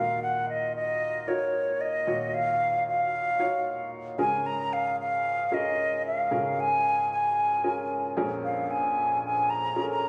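Uplifting and warm, this short pop excerpt moves at 113 BPM in a straight 4/4 feel, set in Db major and tuned slightly sharp to A4 = 441 Hz. A mellow silver concert flute carries the melody from start to finish, sitting up front with an airy, metallic tone, soft attacks and expressive vibrato, ranging from Db5 to Bb5. Beneath it, a baby grand piano supplies accompaniment across the full 10.1 seconds, its worn, vintage character smooth and well behind the flute in level, spanning from Bb1 up to Db5. The harmony passes from Ebmadd9 to Db6 at 4.2 seconds and settles on Bbm7 at 8.2 seconds. The sound has the feel of a phone capturing the room, with moderate stage reverb and a club-like ambience giving the pair a sense of space.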